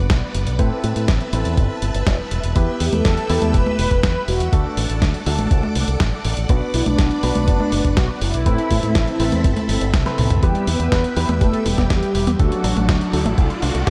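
Punchy envelope-filtered electric bass drives this danceable, nostalgic italo disco excerpt, joined by a thumpy electronic kick, gritty sampler-style congas, hats, snare and toms, lush string-machine chords, dark piano stabs and a mellow, brassy synth melody entering at 2.8 seconds, before a drum fill gives way at 10.4 seconds to a bright, filter-swept unison pluck arpeggio, with a background riser arriving at 12.5 seconds, in a dark, softly reverberant production.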